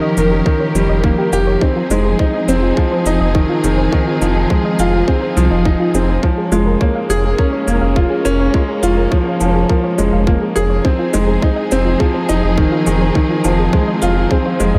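A lush, bowed string section holding sustained chords, a soft, detuned pluck playing arpeggios in the background and a clear, woody upright piano riff with audible action noise all open this moving, intimate piano and strings electronica excerpt in F minor at 104 BPM, joined at 0.2 seconds by a deep, round analog bass and an overdriven shaker and at 0.5 seconds by a tight, up-front electronic kick, while sidechain pumping on the strings, pluck and bass, tape echo and shimmer reverb on the piano and pluck, and a moderate echo chamber give the piece its breathing, spacious sound over chords moving from Eb7/F to Fm7 and Bbm7/F.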